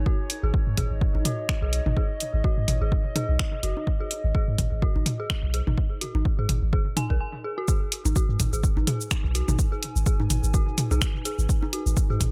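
An echo-heavy, dry-roomed mix opens this clipped slice of minimal techno, clinical and quirky in mood, moving at 126 BPM in 4/4 with a 57% swing on the sixteenths in G# minor. A punchy, up-front sub bass with a pitch-drop attack pumps against the beat from the start, joined by a tape-warm, analog electronic kick and a drum machine of finger snaps, hi-hat and shaker, while overdriven, layered electronic toms and congas carry analog delay from 0.8 seconds. Beneath them a warbling, nostalgic, lo-fi pad with chorus and ring-modulated, wave-folded colour sustains throughout, and a very quiet swarming, granular drone hovers tensely until it stops at 7.2 seconds. The riff comes from an eerie, inharmonic FM bell, detuned and mellow yet full-bodied, decaying through chorus and analog delay as a filter sweep works on it across the opening stretch. After a short break, the drop lands at 7.7 seconds on a G# minor chord, with the bell, pad, bass and percussion pressing on to the cut.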